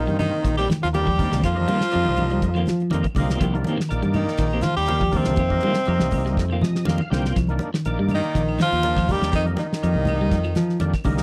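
A straight 4/4 groove at 122 BPM drives this defiant, hypnotic afrobeat passage in C minor, cut from a longer piece. It rests on a damped 70s drum kit with a fat snare, tight kick and hi-hat, joined by very quiet low-tuned congas and faint, woody claves. A fingered electric bass sits up front with a warm, direct tone, while two clean, picked electric guitars stay in the background, one playing arpeggios and the other tremolo-treated stabs that stop at 7.4 seconds. An overdriven tonewheel organ adds thick, gritty accompaniment with percussive third-harmonic attack and chorus vibrato, and both the organ and the drums play a fill from 6.4 to 7.4 seconds. Up front, a breathy tenor saxophone carries the melody with vibrato and a slapback echo, while a growling trombone with scooped notes and an edgy, raspy baritone saxophone play a second line further back. The harmony alternates between Cm7 and F7sus4, and the dry, close 1970s-style studio sound carries only light reverb.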